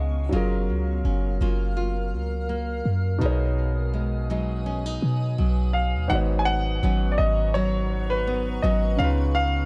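A small-room sound frames this tender, smooth contemporary R&B excerpt at 83 BPM with a light swing, where a soft, muted felt upright piano and fingerpicked nylon-string guitar arpeggios with tape echo rest on a cloudy, evolving granular pad and a deep, boomy 808-style bass, until a clear, present grand piano takes the melody with tape echo from 5.7 seconds.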